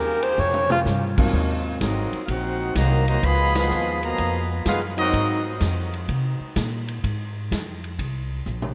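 Swinging and brassy, this short big-band swing clip opens with a breathy, subtoned tenor saxophone scooping into a brief solo over very quiet sustained chords from a vintage saxophone section. A woody pizzicato upright bass sits up front throughout, a drum kit with a punchy kick and a medium-tuned snare swings in a big natural room with fills, and a very quiet grand piano slips in for a moment. At 1.8 seconds a clear, lightly vibratoed trumpet section takes the melody over a dark trombone second line, with a band accent at 3.5 seconds, all bathed in a vast, echoing cathedral-like reverb.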